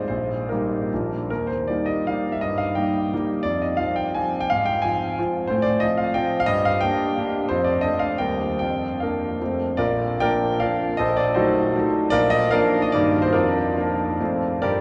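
Dotted rhythms drive this graceful, rustic triple-time dance in 3/4, taken with free rubato that lets the tempo range between 130 and 197 BPM as the harmony moves from Eb major into Bb major at 5.5 s. A solo concert grand piano plays throughout the 14.8-second fragment of a longer classical romantic piece, its brilliant, polished tone sitting up front with deep bass, long sustain and audible action noise that gives it an intimate presence. A cathedral reverb lets the notes hang in the space, while the worn cassette sound adds a warbling pitch drift.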